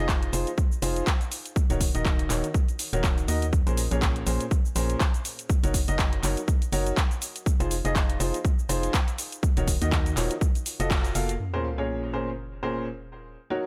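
Soulful and bittersweet, this piano house excerpt in Bb minor moves at 122 BPM with a swung 16th-note feel. It is led by a clear, woody upright piano riff carrying tape echo and sidechain pumping. Beneath it sit a hollow, dark organ-like FM bass that also pumps, a punchy, overdriven electronic kick up front, and a filtered, overdriven house kit of cabasa, handclaps and hi-hat, set in a digital ambience. After a band accent at 10.9 s the kick drops out, and at 11.4 s an electronic sub drop arrives as the kit and bass fall away, leaving the piano over the sub drop.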